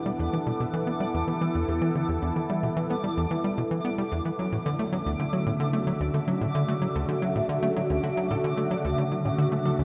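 Cosmic and mysterious, this short cut of sequencer-driven space music moves at 111 BPM in a straight 4/4, shifting from Em7 to Dmaj7 at 4.4 s. A swirling, airy phased analog pad holds sustained chords up front with a mellow chorus sheen, while a tight, punchy sawtooth sequencer bass drives a riff from 0.1 s through a tape echo. A very quiet, detuned unison pluck traces arpeggios and a twinkling granular texture sparkles high above, all bathed in a huge ambient reverb and the warbly pitch drift of worn cassette tape.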